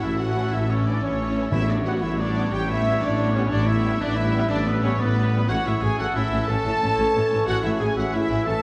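Adventurous and heroic, this short cut from a cinematic adventure film score moves at 121 BPM in a straight 12/8 in A major, its harmony shifting from A to G over A and back. An expressive, vibrato-rich studio violin section carries the melody, while a bright clarinet, a clear, distant oboe and a lush symphonic violin section add second lines. Symphonic violas, mellow French horns and a tight trombone section entering at 0.4 seconds give accompaniment and sustained chords, mellow trumpets add stabs, and tuba, cellos and double basses hold the bass, with a brief, dry, articulate timpani part from 1.5 to 2 seconds, all set in a dark production with a wet concert hall reverb.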